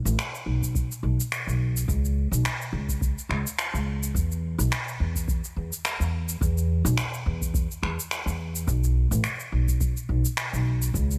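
An upright bass and a layer of electronic shaker and finger snaps open this short sunset chillout excerpt at 0.1 s, with a deep electronic kick drum joining at 0.6 s. The mood is warm and sunny, moving at 106 BPM in 4/4 with a gentle 16th-note swing. The pizzicato bass sits up front, woody and warm on steel strings, as it stays low between A1 and E2. The shaker and snaps are overdriven and layered, with a produced, up-front edge and the trace of a large room. The analog kick adds a tape-warm thump, and the mix as a whole stays dry and close.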